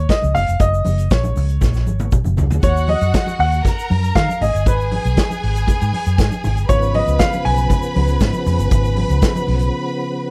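Disco at 118 BPM in G# dorian with a glamorous, danceable mood, cut from a longer piece: a clear grand piano carries the melody over a dark, round, foam-muted electric bass and a punchy, up-front vintage drum kit in a pumping small room, with low-tuned congas and a grainy shaker in the background, a drum fill leading into lush bowed strings at 2.6 seconds, a fat, lightly overdriven tonewheel organ with key click and slow rotary speaker adding sustained chords from 6.7 seconds, and a brief break at 9.7 seconds, all in a dry, close sound.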